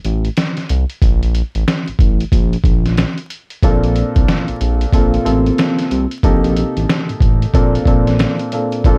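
A compressed, pitched-down sampler-style drum kit with a thumpy kick, medium-tuned snare and muffled small-room character drives this confident, nostalgic boom-bap hip-hop fragment, swung on the sixteenths over a smooth, mellow synth bass blending sawtooth, square and triangle tones with ring modulation, while a dark, vintage baby grand piano, filtered at both ends, enters at 3.6 seconds to carry the chords, all in a dry production dusted with vinyl crackle.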